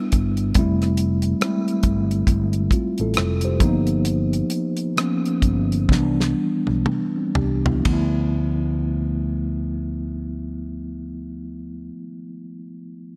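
Light reverb and studio ambience surround this smooth, soulful neo-soul and R&B excerpt in D dorian at 60-70 BPM with a swung 16th feel: a mellow, clean tine electric piano moves from a rootless Cmaj9 through Fmaj9, G7alt and Dm69, a round, punchy fretless electric bass sits up front, and a dry, damped 70s drum kit with a fat snare, tight kick and dark cymbals plays as the tempo slows into a drum fill at 5.9 s that leads to the closing section at 7.8 s, shortly after which the drums stop.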